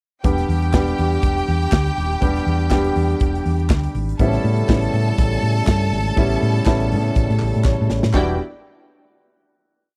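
Glamorous and sultry, this short disco piece at 122 BPM in E dorian rides a four-on-the-floor beat from a punchy, polished drum kit with open hats on the off-beats, a dark, round hollow-body bass playing octave lines with slides and chromatic approach notes, a warm grand piano pushing rootless chords with grace notes, and a lush, focused string section whose fast runs land on held notes, while very quiet crisp handclaps mark the backbeat from 0.7 s. At 4.2 s the harmony moves from Em7 to A9 as a lightly overdriven tonewheel organ with chorus vibrato and slow rotary speaker enters as a background pad. Piano and drum fills lead into a final Em7 chord at 8.1 s, all captured in a dry, close 1970s-style small-room sound.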